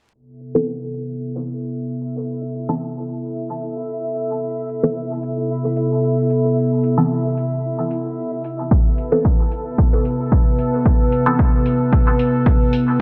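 A warbling, dark tape-like pad opens this nocturnal, cavernous dub techno excerpt on a sustained Amadd9 chord, pumping under sidechain with chorus and reverb, soon joined by soft, tape-warm hi-hats, muted sawtooth chord stabs with phaser and dub echo, a bright, resonant texture bubbling through random filter steps, and filter sweeps across the drums and synths, before a punchy analog kick arrives up front at 8.7 s, all set in light reverb with vinyl crackle.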